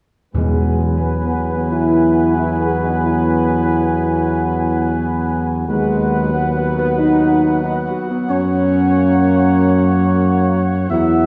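In a steady, straight 4/4, this triumphant, majestic classical brass passage, cut from a longer piece, sets a warm, softly attacked trumpet section carrying the melody over bright trombone and dark French horn sections holding sustained chords, with an up-front tuba on the bass and hard-mallet timpani striking articulately only from 0.3 to 1.3 seconds, all within a spacious concert-hall reverb.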